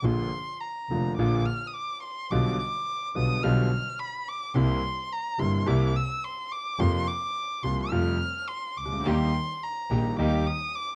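A rubato tango pulse in 4/4 at 106 BPM gives this short fragment of a longer piece a dramatic, passionate sway in Bb major. A warm, bowed violin carries a solo across the whole passage, high in its register with vibrato, portamento and a soft attack, sitting up front with a cassette-tape tint. Beneath it, a vintage concert grand piano plays the accompaniment with a smooth, deep bass and a clear presence, also touched by cassette tape, while a dark, woody double bass is bowed with vibrato and a smooth top. The harmony moves from Bb through G7/B, C7, Fsus4 and Fadd9 before settling on Eb, where a pure, floating symphonic string section, bowed sul tasto with a soft attack, adds brief stabs in the background from 9.1 to 10.4 seconds. The whole is a home recording on cassette with a moderate studio ambience, and the violin lingers alone until 11.0 seconds.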